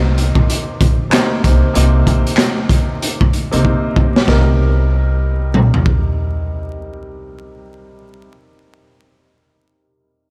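A smooth, vintage-toned grand piano and a woody, pizzicato upright bass open this moody, dark boom-bap hip-hop excerpt, resting on a single minor-seventh chord beneath vinyl crackle and light small-room reverb. From 0.2 seconds a gritty, muffled garage drum kit sits up front with a punchy kick, medium-tuned snare, handclaps, hi-hat and toms in a swung sixteenth feel. The drums play a fill at 3.6 seconds and drop out at 6.0 seconds, leaving piano and bass to carry on.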